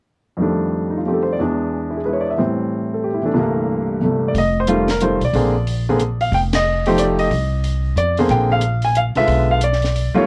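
A worn, warbling old cassette sound with a warbly pitch drift and light reverb wraps this short cut from a longer jazz piano trio piece, playful and warm in mood, swinging in 3/4 at 182 BPM in F major. The intimate baby grand piano carries the melody from the start, alone for the first few seconds, up front and natural with audible action noise and a short sustain, ranging from C2 to Ab5 over chords such as F13, E7 and Am7. At 4.3 seconds the upright bass and a compact cocktail drum kit join as the second section begins, the pizzicato bass woody and thumpy on gut strings, sitting up front between F1 and F2. The dry kit plays softly behind them, with dark cymbals on hi-hat and ride, a high-tuned snare and a punchy kick. The whole trio hits a shared accent at 6.5 seconds, and the harmony moves through Bb9, Cm and Bdim7 before the clip cuts off.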